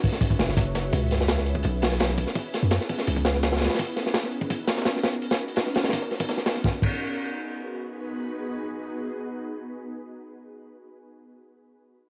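A cassette home recording with small-room ambience carries this dark, atmospheric drum and bass and jungle cut at 168 BPM in G# minor, where an ethereal, airy, detuned pad holds slow-attack chords through chorus and reverb, a crunchy, gritty breakbeat kit with a punchy kick and dark cymbals sits up front over a very quiet, compressed sampler-style break, and a deep, long 808-style bass with tube saturation enters at 0.4 s beside a faint electronic sub drop at 0.9 s before the drums fall away by 6.9 s, leaving the pad alone.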